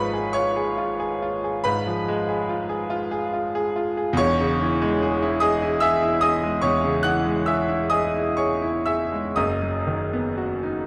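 This is a romantic classical nocturne for solo piano, serene and tender in mood, moving in 12/8 with rubato. A concert grand carries the whole piece, its tone bright and brilliant, sitting present and up front while its register stretches from a deep bass at E1 up to F#6. The harmony drifts from Fdim/Ab at the opening to C#m/E at 4.2 seconds, then settles onto B/F# at 9.4 seconds. A wet recital-hall reverb with a 1.6-second decay surrounds the instrument, and the overall production leans dark and warm. This short passage, cut from a longer work, lasts just under 11 seconds.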